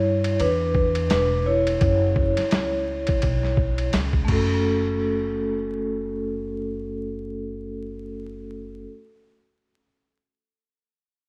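Over a swung sixteenth-note 4/4 groove, this cool, mellow jazz-hop fragment pairs a ringing, airy vibraphone with soft mallets and slow motor vibrato, soloing up front until 4.6 seconds, with a woody, dark pizzicato upright bass, while a gritty, compressed, pitched-down boom bap sampler-style kit with a thumpy kick, snare, hi-hat, ride and crash plays up front until 4.5 seconds, and the recording sits in light small-room reverb with worn, warbling cassette tape, pitch drift and vinyl crackle.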